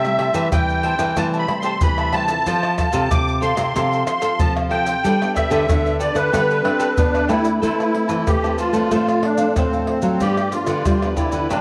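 Yearning and bittersweet, this short excerpt of samba and choro moves at 93 BPM in a straight 4/4, settling into A minor from 7.6 seconds. A reedy musette accordion carries the melody up front, its wet musette tuning giving a shimmering edge as it ranges from C4 to D6. Beneath it, a crisp, bright cavaquinho is picked for accompaniment and a fingerpicked nylon-string guitar with fresh strings adds chords from the background, both tinged by the grain of cassette tape. A second nylon-string guitar, deep and fingerpicked in a classical manner, holds down the bass, while maracas, pandeiro, tamborim and a tight surdo are played with hard hands in a small-room sound. The harmony passes from Am7/C through F and Gadd9 before shifting to Amadd9, Dm7/A and G7, all within a home cassette recording bathed in a moderate, lush hall reverb.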